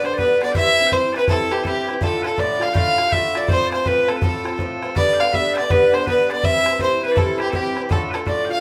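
Celtic folk hornpipe at 163 BPM in 4/4 with a swung eighth-note feel, dark yet lively and driving, heard as a brief cut from a longer piece where the chords move through G, C, Dm and F. An earthy, boxy, up-front fiddle carries the melody with light vibrato and an airy bow, while piercing bagpipes hold a continuous second line above picked, metallic double-string Irish bouzouki and a boomy, open bodhran. The band plays live together in a small, reverberant room that wraps the performance in a wet ambience.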